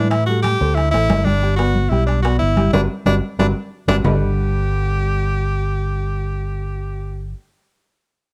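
Sunny and lively, this Afro-Cuban jazz excerpt at 183 BPM in G major features an up-front bright tenor saxophone soloing with vibrato through plate reverb, a woody, slightly detuned upright piano with short sustain, and a growly, amped fingered electric bass, while ringing congas and metal-shell timbales sit in the background from 0.1 to 4.1 seconds, where a band accent and drum fill lead into a Gmaj9 chord, set in a dark production with light reverb.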